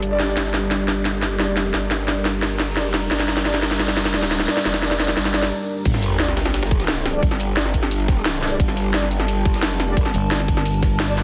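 Tense and mechanical, this dark technical drum and bass excerpt builds over a drum fill from a kit with a cracking snare and metallic hats, a background riser and sub drop, and filter-swept brass stabs from a soft-attacked classical-style ensemble with tape echo. Deep, moody sawtooth pads and a warbling, lo-fi square-wave texture pump under the sidechain, while an aggressive, wobbling growl bass with overdrive sits up front. After a short break at 5.5 seconds the drop hits at 5.9 seconds with a tight electronic kick and a very quiet gritty pitched-up breakbeat, and a thick FM growl bass takes over at 10.1 seconds, all in a dense, heavily limited mix with lush hall reverb.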